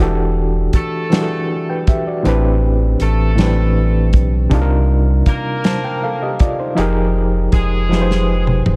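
Yearning and late-night in mood, this slow six-eight R&B excerpt opens with a gritty, barky overdriven reed electric piano pulsing with tremolo over a thick, up-front saturated sub bass, moving through lush minor-eleventh chords. At 0.7 s a dark, smooth soul drum kit with a tight kick and rolled-off top arrives alongside clear horn stabs in tight octave doubling with light vibrato, floating in a diffuse ambient delay. A drum fill closes things out at 7.9 s, all set in a light, small-room reverb.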